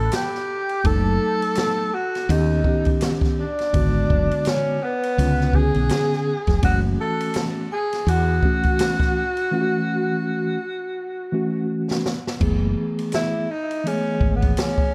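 A breathy tenor saxophone carries the melody in this mellow, smoky jazz-hop cut from a longer piece, its subtone voice full of vibrato and scooped notes, with soft attacks and an analog delay that make it sound distant and roomy yet whispered and intimate. At 83 BPM in 4/4 with a lazy 16th-note swing, a woody fretless electric bass with a hollow-body character sits up front alongside an open acoustic jazz kit with dark cymbals, a medium-tuned snare and a boomy kick. A clean, mellow tine electric piano joins at 0.8 seconds to voice jazzy changes such as F#m6, C#7b9 and F#m7, while a vibraphone played with soft mallets adds a metallic, ringing second line with slow motor vibrato from the background until 11.7 seconds. The groove opens with a short break, drops into another break later, and a drum fill leads into a shift to F#m11 at 12.4 seconds, where the saxophone takes a solo. The production is dark and warm, with light reverb and small-room ambience.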